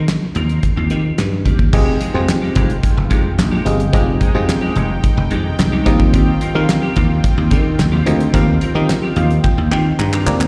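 Early-eighties boogie funk in F minor at 109 BPM, this slick, danceable excerpt is cut from a longer piece and sounds like a live gig heard through a venue's PA, with small room ambience and recital hall reverb. A dry, thumbed slap bass sits up front with a growly, punchy, foam-muted bite, joined by a damped 70s drum kit with a fat snare, tight kick, dark cymbals, hi-hat, crash and handclaps. A clean, compressed semi-hollow guitar plays a picked riff from the start, set back in the mix with ensemble chorus and slapback echo. At 1.7 seconds the harmony moves from Eb69 to Fm9 as a glassy FM electric piano with bell-like attack and warbling chorus enters alongside a smooth, detuned sawtooth pad carrying sustained chords with chorus and tremolo. The chords return to Eb69 at 5.9 seconds, and the electric piano and drums each add a fill in the closing stretch.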